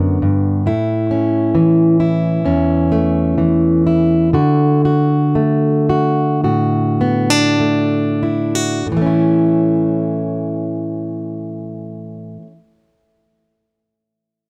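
Haunting and melancholic, this short cut from a longer folk piece features a solo fingerpicked steel-string acoustic guitar, plugged in and up front. Its jumbo, full-bodied tone carries audible finger squeak as it moves through G, A and D in a straight 4/4 that slows from 0.7 to 8.9 seconds, with the tempo ranging from 46 to 68 BPM. The guitar stops at 12.6 seconds, and the dry, close sound of a small room recalls a 1970s studio recording.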